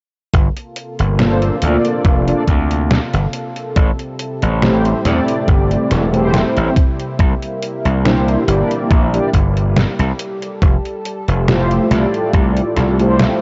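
A gritty, overdriven slap bass punches up front through this nostalgic, woozy vaporwave excerpt at 70 BPM in G dorian, joined by a thumpy overdriven electronic kick, a detuned 8-bit drum machine with fat snare and hi-hat re-recorded in a small room, round brassy synth brass with vibrato, a filter sweep and analog delay entering at 1.2 seconds, and a lush, thick unison pad with chorus and phaser sustaining Gm11, Am7, C7 and Fmaj9 in the background, all softened by light reverb and a dull cassette-tape sheen.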